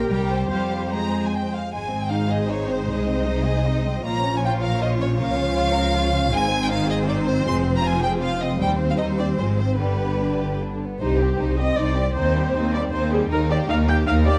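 A moderate scoring-stage reverb with a 1.7-second decay surrounds this brief, urgent fragment of a quick classical-period movement for string orchestra, set in 3/4 at 145-162 BPM with a rubato, stormy feel. A close, vibrato-laden first violin section carries the expressive melody, while a second violin section with the same rich, bowed tone adds an inner line from 0.1 s. Beneath them, a focused viola section with a smooth top supplies accompaniment, and the even cello section sits in the background, sharing the bass with a distant double bass section whose soft attack gives it a mellow weight. The harmony begins in Ab major and turns to C minor from 6.3 s, passing through chords such as Fm, Bbm and Cm/Eb and reaching a G chord at 9.8 s. A final stretch from 11.0 s moves from Cm to an Eb chord as the passage breaks off.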